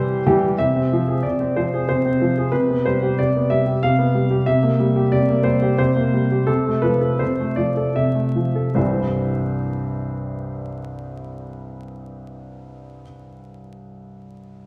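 In a rubato 3/4 lilt drifting between 74 and 94 BPM, this playful, cheerful classical-period piano sonatina in C major, tuned to A4 = 436 Hz, is carried entirely by a solo baby grand that sounds clear, intimate and natural, sitting up front with its action noise audible across a range from C2 to F5. The phrasing slows down from 3.5 to 8.8 seconds, moving through harmonies over a C bass such as Fm/C and G7/C before settling back on C at 8.8 seconds, where a new section begins. A wet recital hall reverb with a 1.5 second decay places the listener further back in the room, and a layer of vinyl crackle colours this short cut from a longer piece.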